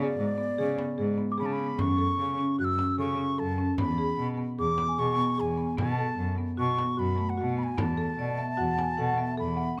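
Hypnotic and pensive, this contemporary chamber piece in 5/4 at 150 BPM sets an airy wooden flute melody with vibrato up front over woody marimba arpeggios and a nasal, expressive bowed cello bass, while a frame drum played with hard hands and a delicate, bell-like celesta sit in the background, and a dark, ringing vibraphone adds a second line from 8.2 seconds, all within a moderate recital-hall reverb over an F#m, E7, B5 and Esus4 progression.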